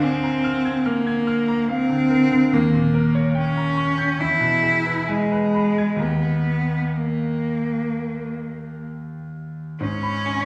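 A single bowed cello carries the melody in this romantic classical duo, its rich, focused tone shaded with vibrato and sitting up front, though with a slightly distant quality. It sings an elegiac, yearning line between G#3 and E4, while a bright grand piano accompanies from D2 up to G#6. The piano has a brilliant, intimate character with long sustain, and the mechanism's action noise is audible as it plays close and present beside the cello. The pulse moves freely in rubato at roughly 62 to 73 BPM in 4/4, with harmony passing through A#7/D, D#7, E and D# before settling on G#m at 9.8 seconds. Both instruments play throughout this brief 10.4-second fragment of a longer piece, set in the wet reverb of a recital hall with a decay of about 1.6 seconds.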